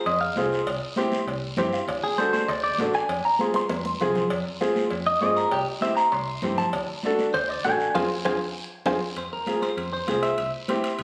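A passionate, danceable cumbia excerpt in 4/4 with a straight feel, cut from a longer piece and moving over a minor-key progression of Fm, C and D. A clean, twangy electric guitar carries the melody up front, its picked, compressed tone bathed in spring reverb as it solos from the opening through 9.2 seconds. Beside it, a woody upright piano supplies accompaniment just as prominently, slipping in a brief fill around 1.4 seconds. Underneath, a metallic FM bass with a fast, decaying attack holds the low end, while ringing cowbell and timbales, high-tuned congas with a thin skin and a raspy, close guiro fill out the percussion. Drum fills arrive at 3.6 and 8.0 seconds, the latter joined by a band accent that leads into a short new section at 9.2 seconds. The whole mix sits in a small, wet room and was captured on a phone in that room, with added studio reverb.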